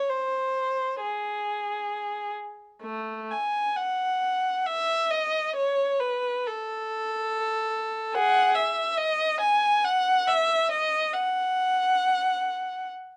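A single bowed violin opens the recording at 0.0 s and carries this yearning, meditative classical fragment alone until 12.9 s. The piece moves freely in 3/4 at roughly 59-72 BPM, with an expressive rubato that lets the line breathe rather than keep strict time. The violin's tone is focused and smooth at the top, coloured by vibrato and sitting up front, ranging from A3 to G#5. Light reverb surrounds the instrument, and the overall production has a dark, warm cast. Tuned to A4 = 441 Hz, the passage is drawn from a longer work.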